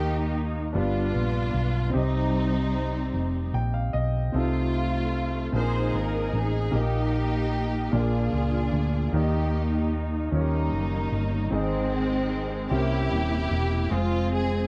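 A round, punchy hollow-body electric bass sits up front in this slow gospel excerpt, its dark, amped tone anchoring the low end at 50 beats per minute in a straight 6/8. Above it, a lush studio string section carries the melody with smooth, even bowing and vibrato, giving the passage a jubilant, hopeful glow. A concert grand piano supplies clear accompaniment with deep bass and long sustain, and steps forward with a brief fill from 3.1 to 4.3 seconds. The harmony moves through Eb major with colourful turns such as G7, Bb9sus4, Eb7 and C7b9 before ending on Fm, and the instruments are tuned slightly below standard pitch at A4 = 439 Hz. The sound is dry and close, with little reverb, in the manner of a 1970s studio session, and the 14.7-second excerpt is cut from a longer piece.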